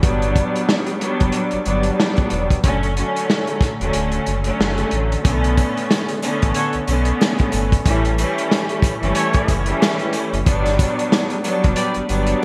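Moody and tough, this boom-bap hip-hop excerpt rides a swung 4/4 groove built on a vintage acoustic drum kit that sounds lo-fi and muffled, with a tight kick, a medium-tuned snare, hi-hat and gated reverb, sitting up front. Underneath, a deep sub bass with an octave layer holds sustained, sine-like low notes, while a rich studio string section provides bowed accompaniment with light vibrato, its smooth tone shaded by cassette tape colour and filtering. The kick drops out from 3.9 to 5.2 seconds, just before the harmony shifts, and quiet, jingly sleigh bells join in the background at 5.3 seconds. At 6.6 seconds a dark, distant trumpet section adds tight stabs in a classical style, filtered and trailed by delay. A moderate plate reverb and vinyl crackle wrap the whole piece in bright 1980s-style digital production, over chords moving from Gmaj7 and Dmaj7 to Bm9, A7 and back to Gmaj7.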